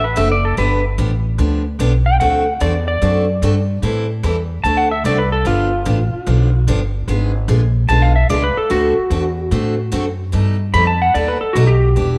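A twangy, clean lap steel guitar and a woody, thumpy upright bass open this cheerful, playful western swing excerpt together, both sitting up front, with a bright picked steel-string acoustic guitar joining at 0.2 seconds. At 148 BPM in 4/4 with a strong swing on the eighth notes, the tune sits in D mixolydian and moves through jazzy changes such as D7, G9, Am7, a G#dim7 passing chord and a Baug7 near the close. The lap steel carries a slide solo across the whole passage, its electric edge ringing high over the band. The pizzicato upright bass, with gut strings and a dark tone, anchors the low end, while the acoustic guitar picks out accompaniment in the middle register with the sparkle of fresh strings. A moderate echo chamber reverb gives the country ensemble a roomy, lively glow, and the piece is cut from a longer performance.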